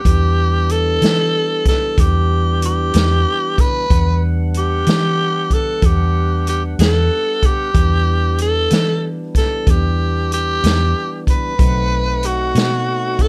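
A dark, lightly reverberant production frames this soulful, smoky slow blues excerpt in E minor at 62 BPM in 12/8, where an up-front, raspy growling tenor saxophone with vibrato carries the melody over clean tonewheel organ chords through a slow rotary speaker, a round, foam-muted fingered electric bass, and a vintage drum kit of hi-hat, punchy kick and snare, with the harmony sitting on Em7 before moving to B7b9 at 11.6 seconds.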